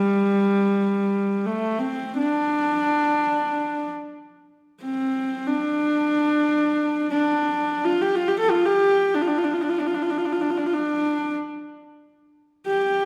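A husky, earthy horsehead fiddle plays alone and up front in free time throughout this windswept, vast piece of Mongolian traditional music in D yu mode, tuned to A4 = 444 Hz, its bowed horsehair strings moving between G3 and A4 with light vibrato and portamento inside the lingering 1.6-second reverb of a recital hall, in a 13.1-second passage cut from a longer piece.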